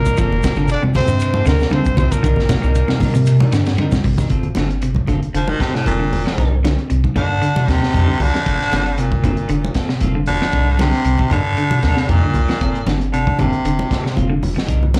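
Afrobeat with a driving, intense feel, this excerpt opens on a brief horn passage in which a close-miked trumpet with light vibrato carries the melody over a breathy, whispered alto saxophone and a smooth-topped bass trombone, all gone by 3.8 seconds. Underneath, a round, deep analog bass with a filter sweep anchors the groove alongside a saturated breakbeat kit with a punchy kick, high-tuned snare and dark, rolled-off cymbals, while bright congas sit in the background and a grainy shekere adds texture until a drum fill ends at 4.3 seconds. A clean, picked electric guitar spins dark arpeggios, and a hollow-body guitar drenched in lush chorus adds stabs from further back, the harmony swaying between Gm11 and Cm9. From 5.4 seconds a raspy, gritty baritone saxophone takes an up-front solo with vibrato, punchy yet roomy in tone. Slapback echo touches the trumpet, the alto and baritone saxophones and both guitars, and the whole performance carries the club reverb of a live gig heard through the venue's PA.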